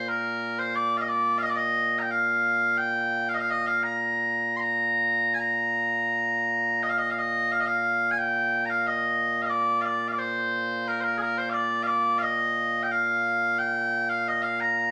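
Set in a large studio room with moderate reverb and captured live, this stirring, ceremonial fragment of Scottish traditional pipe music features solo bagpipes, loud, piercing and continuous up front, playing the same strain twice, the repeat beginning at 6.8 seconds.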